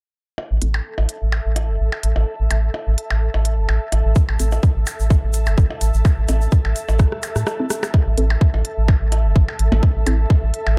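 Dub-echoed percussion blips open this sparse, hypnotic minimal techno excerpt, quickly joined by a round, deep analog bass under a filter sweep, muted, phaser-tinged chord stabs with their own sweep and echo, crisp hats and rim clicks from a garage kit, and an airy, warbling pad pumping against the sidechain, before a tight, up-front kick and a grainy shaker in the background arrive at 4.2 seconds, and a drum fill from 7.0 seconds and a brief break lead into a dark, dry-sounding second part.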